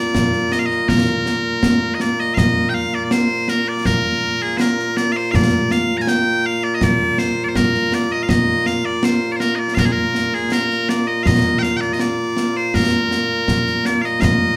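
A bright, live-room sound with a wet studio reverb frames this short cut from a longer piece of Scottish traditional pipe music, played by a band together in one room. Set in Bb major at 81 BPM in a straight 2/4, it carries a stirring, ceremonial mood. Loud bagpipes take the melody from the first moment, piercing and continuous, standing up front as the solo voice across a range from Bb2 to Bb5. Concert snare drum and concert bass drum join almost at once, their acoustic sound ringing with bright cymbals in the live space. After a brief opening passage, the music moves into a longer second section at 2.4 seconds, and the pipes hold their sustained, penetrating line through to the close.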